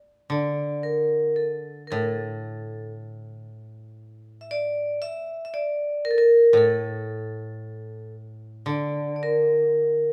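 A reverberant recital-hall sound frames this austere, still excerpt of Japanese traditional chamber music, moving at a rubato 57 BPM in 2/4: a metallic, ringing vibraphone struck with hard mallets, its motor off, carries the melody up front with a boxy edge, while a quieter koto, dry and woody under fingerpicks, supplies a low accompaniment from 0.3 to 10.1 seconds.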